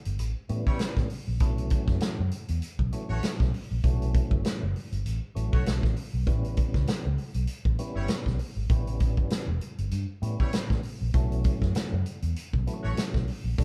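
Swung sixteenths drive this playful funk excerpt in 4/4, with an up-front big-band drum kit of punchy kick, medium-tuned snare and hi-hat ringing in a big room, alongside a dark, foam-muted electric bass with a round, punchy tone. From 0.5 s a fat tonewheel organ adds percussive, lightly overdriven stabs with key click, chorus vibrato and a slow rotary speaker, and at 0.7 s a clear horn section with light vibrato and a smooth top joins on a loose second line. The band shifts between A9 and B9sus4, playing live together in one room under light reverb.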